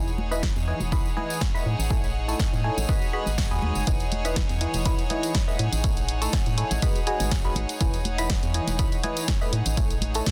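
Lightly swung sixteenths drive this euphoric, feel-good piano house excerpt, with a punchy electronic kick up front from 0.4 s, re-recorded in a large room, alongside an analog drum machine's hi-hat and snare, plus soft-handed tambourine and congas kept close and dry, while a hollow, dark, organ-like FM bass pumps beneath a biting, barking FM electric piano riff treated with phaser, tape echo and sidechain pumping, and a bowed chamber string section with light vibrato and an earthy, smooth top also pumps through Emaj7, Amaj7 and G#m7 changes, in light reverb and a dense, heavily limited modern master.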